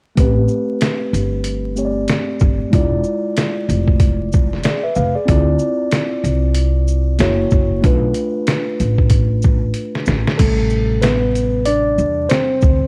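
At 0.2 seconds a mellow tine electric piano, an upright bass and a trip hop sampler-style drum kit enter together, setting up a nocturnal, mellow jazz-hop groove in A minor at 94 BPM in 4/4, with a 60% swing on the sixteenths. The drums sound compressed, pitched down and gritty, with a thumpy kick, a medium-tuned snare, hi-hat, shaker and crash cymbal, as if re-recorded in a small room and run through cassette tape. Alongside them the upright bass is plucked pizzicato on steel strings with a woody, acoustic tone. The electric piano stays clean and direct, also colored by cassette tape, as it moves through Am9, E7b9, Dm9, F#7 and Bm7b5. A drum fill at 9.8 seconds leads into a short electric piano solo from 10.4 seconds as the harmony returns to Am9. All three parts sit up front in a dry mix with little reverb, framed by vinyl crackle and the feel of a home cassette recording, in this excerpt cut from a longer piece.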